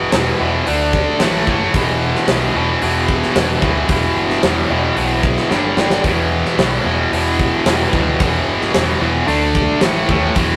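A rough rehearsal-room recording with tube saturation and a moderate studio reverb gives this hard rock excerpt, cut from a longer piece, a raw and heavy edge. At 111 BPM in a straight 4/4 and E minor, the mood is aggressive from the first beat. A tight, double-tracked distorted guitar sits up front with a bright, picked tone, driving the riff through power chords on E, D, A and G. Beneath it, an overdriven picked electric bass adds a growly, amped low end for the full length. The tight metal drum kit, airy and polished with a medium-tuned snare, tight kick and hi-hat, enters at 0.1 seconds and breaks into a fill from 5.5 to 6.0 seconds before the riff carries on.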